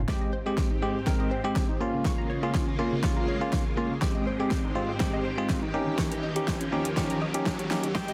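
A dense, heavily limited dance-pop build-up in Ab major at 122 BPM, carefree and upbeat, where a punchy, overdriven deep house drum kit with a fat snare and metallic hats drives beneath a barky, bell-like tine electric piano, shimmering string machine violins with phaser and ensemble chorus, and a detuned unison pluck playing arpeggios through delay in the background, all three pumping to the sidechain, while a riser creeps in at 2.7 s and a clean, direct-recorded electric guitar riff enters at 8.0 s over chords moving from Abmaj7 through Db6, back to Abmaj7 and on to Eb7.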